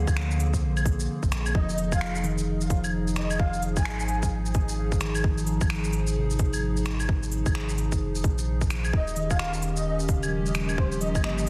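A wistful, rainy future garage excerpt opens on a warbling, detuned pad with chorus and phaser, a mellow tine electric piano with tape echo, a round sub bass and a faint, flickering, grainy texture, the pad and piano both carrying sidechain pumping. A tight, tape-warm electronic kick joins them, along with swung electronic shaker, claves, finger snaps and cabasa with a soft-clipped snare. At 1.6 seconds the grainy texture stops and a breathy, flute-like synth lead with vibrato and digital delay enters, returning at 8.9 seconds as the harmony moves to Eb7, all beneath vinyl crackle and light reverb in a dense, heavily limited master.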